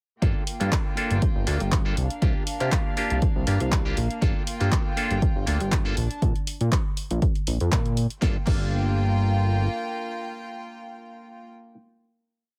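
A four-on-the-floor electronic kick drives this funky, groovy filtered disco house piece at 120 BPM in G minor, with a light 16th-note swing. Programmed closed and open hats, handclaps, a punchy snare on the backbeat and crash come from an analog drum machine, with sidechain pumping on the hats and cymbals. The kick sits up front. A fat, detuned sawtooth bass plays a syncopated line beneath them, pumping and low-pass filtered under a filter sweep through the groove. An overdriven, nasal clav adds dotted-rhythm rootless chords through a phaser, while a reedy chamber string section with a gut-string, period-style tone holds a bowed pad, both also filtered and pumping. The harmony moves between Gm7 and C9sus4, drops out briefly, and the drums stop at 8.6 seconds as the whole piece settles onto a final Gm7 chord. The bass stops at 9.7 seconds, and the clav and strings hold the chord until about 11.5 to 11.8 seconds, all in a dry, close sound.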